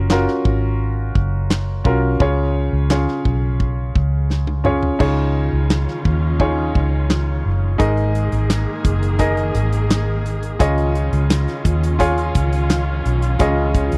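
A dark, round, foam-muted electric bass sits up front in this warm, uplifting slice of piano-driven pop, its amped, punchy tone anchoring the low end from the opening. Beside it, a clear concert grand piano carries the accompaniment with a smooth, vintage character and a deep bottom register. A natural country drum kit recorded in a small room keeps a straight feel in four, with a punchy kick, a medium-tuned snare, hi-hat, handclaps, crash cymbal and toms. A drum fill at 4.3 seconds leads into a new section at 5.0 seconds, where a bowed studio string section enters quietly behind the band with sustained chords, expressive vibrato, portamento and a silky top. The dry, close 1970s-style studio sound frames the players intimately, and the recording is cut from a longer piece.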